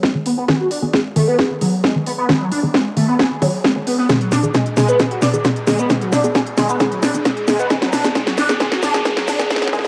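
Driving peak-time techno at 133 BPM in G# minor, this relentless build-up fragment rides a single G#m chord while a screaming, gritty overdriven synth lead riff with phaser, chorus and tape echo sits up front over muted, detuned dub chord stabs that pluck and pump under their own filter sweeps. An overdriven techno drum kit with a cracking snare and smooth hats plays a fill throughout, backed by a heavy electronic kick drum further back and a riser in the background. Soaked in wet spring reverb and cassette tape saturation, the whole build carries a lo-fi home-recorded grain.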